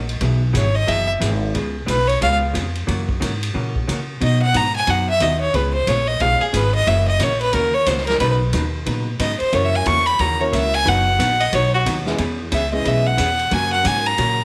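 A clear, earthy fiddle carries the melody up front with light vibrato, soloing throughout this cheerful western swing excerpt in B major at 180 BPM with a swung 4/4 feel. Beneath it, a growly, thumpy pizzicato upright bass sits up front while a distant, roomy big-band drum kit with a boomy kick and rolled-off top keeps time on hi-hat, ride, snare and kick, and a dark, clean, compressed hollow-body electric guitar picks out chords like C#7, F#7 and Badd9. A woody upright piano joins in the background at 9.5 seconds, all within light reverb and studio ambience.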